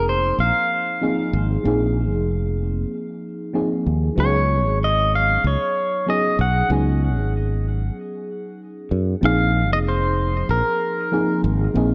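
Sunset chillout at 95 BPM in Bb minor, wistful and smooth, where a twangy, clean pedal steel guitar, fingerpicked with slide, volume swells and delay, carries the melody until 11.4 seconds over a soft, round FM electric piano colored by chorus, phaser and delay and a growly, up-front fretless bass, the harmony moving between Bb9sus4 and Db9sus4 in a dark production with light digital reverb.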